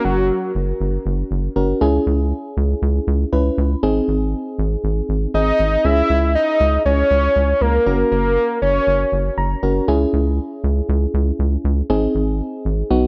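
Synth-pop at 119 BPM in C# dorian, this melancholic, nocturnal excerpt rides a rubbery, bouncy square-wave bass, plucky and dark up front, beneath a warbling, vintage FM electric piano that carries the chords throughout with a mellow tone. After a brief opening phrase, a fat, nasal, detuned analog lead with vibrato and a sub-octave returns at 5.3 s and sings until 9.3 s through an analog delay, while the electric piano slips in a fill at 9.1 s. The whole sits in light reverb and digital ambience, moving through F#, C#m and G#.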